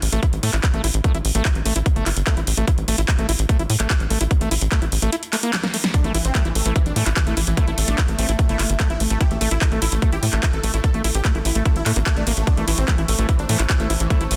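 A straight 4/4 pulse at 147 BPM drives this alien psychedelic trance excerpt in A minor. A tight, punchy sequencer bass with a mellow filter pluck sits up front beside a layered electronic kick and a big-room dance kit of huge snare, handclaps and metallic hats, while a squelchy, gritty acid bass riff pumps through sidechain and digital delay. After a drum fill, a thick, detuned supersaw melody with phaser and vibrato enters at 5.9 seconds, and by 7.7 seconds an evolving drone of moving overtones glows in the background under chorus and reverb, all inside a dense, heavily limited modern master.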